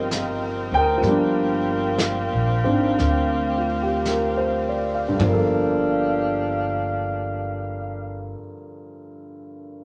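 A concert grand piano with a deep low end opens this intimate, wistful jazz ballad in G minor alongside a mellow saxophone section holding soft-attack chords with vibrato and a woody pizzicato upright bass, while a vintage kit played with brushes adds a gentle, rolled-off shimmer. The swung 4/4 pulse sits between 51 and 67 BPM and slows through the opening seconds as the harmony moves from Cm11 to Gm7, all set in a moderate club reverb. The brushes drop out at 6.1 s, the saxophones and bass stop at 8.3 s, and the up-front piano carries on alone until this excerpt ends at 9.8 s.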